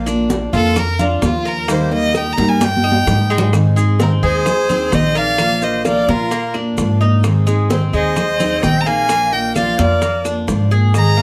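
A clear, focused fiddle carries the melody up front over picked steel-string acoustic guitar, metallic double-strung Cuban tres arpeggios and thumpy pizzicato upright bass, with bright, damped congas, tight high-tuned bongos, grainy maracas and very quiet woody claves filling in this danceable Cuban son and guajira groove at 130 BPM. The fiddle solos through the opening over Bb and Eb until a drum fill from 2.6 to 3.5 seconds leads into the next section. At 4.0 seconds an airy silver concert flute with a crisp attack adds a second line, all set in light reverb.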